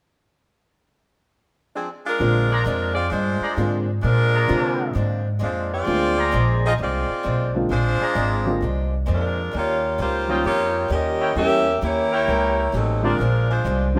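An energetic, joyful big band swing excerpt at 131 BPM in Bb mixolydian, where the saxophone section carries the melody up front from 1.7 seconds, joined at 2.2 seconds by a woody pizzicato upright bass, a natural-toned upright piano and a bright, boxy picked archtop guitar with audible finger squeak sitting in the background. From 2.5 seconds a vintage trumpet section with light vibrato and a soft attack adds stabs over a Bb9 to Eb9 and Edim7 progression, all set in a moderate echo chamber reverb.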